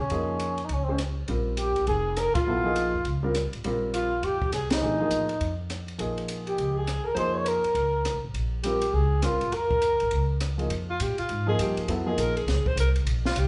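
Modal jazz at a brisk 204 BPM swing in Bb dorian, spiritual and intense, with a breathy, scooped trumpet melody and a mellow subtoned alto saxophone second line over woody pizzicato upright bass, intimate concert grand piano with audible action noise, and a dark, compact cocktail kit, the band hitting accents at 2.3 and 4.7 seconds before the alto saxophone takes a solo from 10.7 seconds as the harmony shifts from Bbm9 to Bb7sus2, all captured live in one roomy studio with a rolled-off top.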